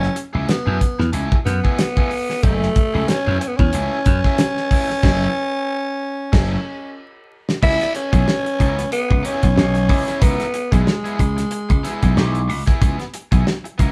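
A driving, sly funk groove opens at once, with a dry, damped 70s drum kit and a punchy, up-front slap bass under a crunchy overdriven guitar, while a raspy, breathy tenor saxophone growls the lead melody close to the mic. The band hits accents together from 5.0 to 7.6 seconds, topped by a drum fill, before the harmony moves from F#m9 to C#m7 for the second part, and the saxophone drops out at 12.5 seconds. A moderate studio reverb and vinyl crackle surround this swung, live-in-one-room excerpt.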